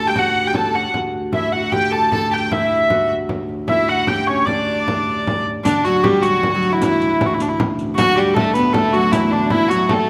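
Ancient and rustic in mood, this medieval dance moves in a straight 3/4 at 154 BPM in D major, and it gathers speed across its 10.1 seconds as a passage cut from a longer piece. A hurdy-gurdy carries the melody up front, its nasal, reedy tone with an airy bow given a touch of slapback echo, while a dark, woody viola da gamba holds a low D drone beneath. A bright, ringing Celtic harp and a clear, focused fiddle with light vibrato each add a second line under the lead. A small, bright frame drum comes in at 0.2 seconds, and once the second section begins at 5.7 seconds a riq joins in the background with dark jingles and a vintage, band-limited sound. The ensemble sits in a moderate recital hall reverb that gives the ancient instruments a natural sense of space.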